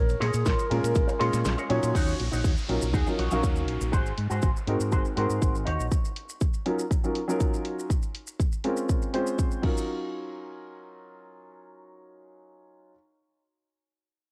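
A lightly reverberant home cassette recording cut from a longer piece, this sleek, sensual nu-disco groove at 121 BPM in Eb dorian opens with a brief airy, hollow jazz flute phrase over an envelope-filtered fingered electric bass, a layered pop drum kit with a fat snare, close and dry maracas with group handclaps, a bright, twangy envelope-filtered guitar riff with chorus and tape echo, and a punchy, up-front electronic kick, while a natural baby grand piano enters at 0.7 s and carries the chords until 12.9 s, an electronic downlifter enters at 1.9 s, and the bass and guitar stop at 5.9 s.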